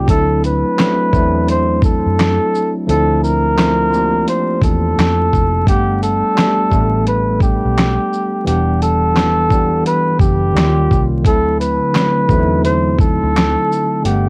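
Vinyl crackle and a home-cassette sound in a moderate booth ambience frame this nostalgic, mellow lo-fi hip hop fragment at 86 BPM with a swung 16th-note feel, where a breathy, scooped jazz flugelhorn solo with light vibrato sings over a clean tine electric piano moving from D9 through Bbmaj9#11/D and Gmaj9, a dark, round, foam-muted electric bass with tube saturation, and a gritty, compressed sampler-style soul kit of thumpy kick, snare, hi-hat, handclaps and shaker that enters at 0.1 s.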